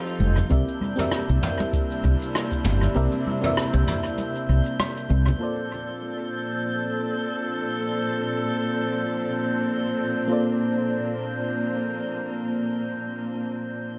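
Opening on mellow FM electric piano with chorus, phaser and tape echo, dark bowed chamber strings and a glassy, drifting glass-harmonics texture over F9 and C9 chords, this blissful sunset chillout excerpt in Bb major at 98 BPM with a 16th-note swing adds a round, up-front fretless bass, distant brush kit, ringing congas and a deep electronic kick that drops out at 3.0 seconds, before the rhythm parts fall away at 5.4 seconds, leaving piano, strings and texture on a Bbmaj7 in a spring-reverb-soaked, echo-heavy mix.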